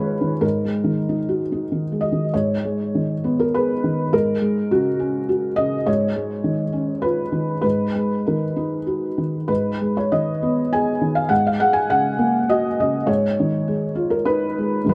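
A felt-muted upright piano plays alone from 0.0 to 14.9 seconds, its soft, mellow tone sitting up front and intimate, with audible action noise and a touch of tape echo in a small, moderately ambient room. This melancholic, wistful excerpt of neoclassical minimalist piano moves in a rubato 3/4 at roughly 94-105 BPM in G# dorian, tuned to A4 = 442 Hz. Its harmony circles over a G# bass through D#m, G#m, F# and C#add9, with the cycle starting again at 7.6 seconds.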